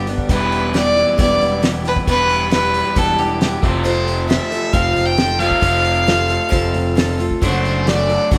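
A straight 4/4 groove at 135 BPM drives this hopeful, open-road stretch of folk rock and heartland rock, with a cloth-damped drum kit arriving at 0.1 s to give a thuddy, dark beat of fat snare, tight kick and hi-hat under a round, direct picked electric bass. A boxy parlour-style steel-string acoustic guitar picks the accompaniment, finger squeaks and all, while a bright, double-tracked overdriven electric guitar churns out a crunchy riff over chords moving from Em to F to D/F#. Up front, a single bowed fiddle carries the melody with a nasal, earthy tone and light vibrato, and the whole band sounds like it's playing live together in one large studio room with moderate reverb.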